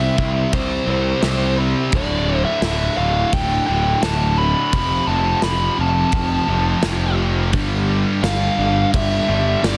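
Brooding and dark, this short cut of quiet-loud alternative rock moves at 86 BPM in D minor, with a biting, overdriven lead guitar carrying the melody high above a growly, fuzz-laden picked bass pushed up front. Two double-tracked rhythm guitars drive the riff, one high-gain and distorted, the other a warmer overdriven part with spring reverb sitting in the background, while a big acoustic drum kit with punchy kick, medium-tuned snare and bright crash cymbals enters at 0.2 seconds. The chords move through C, D5, F and G5 under a dense, heavily limited modern master with light reverb.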